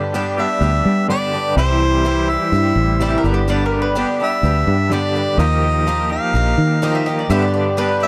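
A straight, steady 4/4 pulse at 126 BPM drives this short folk rock and heartland rock passage in G major, which carries a nostalgic yet hopeful mood. The round, up-front fingered electric bass anchors the groove with a foam-muted, amped tone, while a shimmering, octave-doubled twelve-string acoustic guitar picks out a boxy accompaniment with fresh strings. A twangy, compressed electric guitar plays a clean riff colored by tremolo, and a very quiet tonewheel organ holds sustained chords through a slow rotary speaker. A mellow, smooth-topped harmonica takes the lead melody from 0.4 seconds, and a woody mandolin adds a bright second line on its double strings from 3.0 seconds. The harmony moves from G to C and back, then touches a striking Ebadd9 before returning home, all captured in a dry, close 1970s-style studio sound with light reverb.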